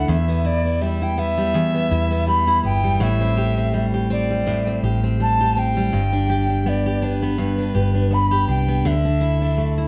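A gently swung sixteenth-note feel in 4/4 carries this short excerpt of sunny, heartfelt acoustic pop, cut from a longer piece. A fingerpicked steel-string jumbo acoustic guitar sits up front with a full-bodied tone, moving through Em, Am7, G and Dsus2. Beneath it, a hollow-body short-scale electric bass, played with the fingers, adds a round, punchy low end with a dark, amped character. Over the top, an alto ocarina sings the melody with a clay, airy, reedy voice, soft attacks, gentle vibrato and a slapback echo, stopping at 9.7 seconds just before the other two parts finish at 9.9. A light reverb gives the whole a soft sense of space.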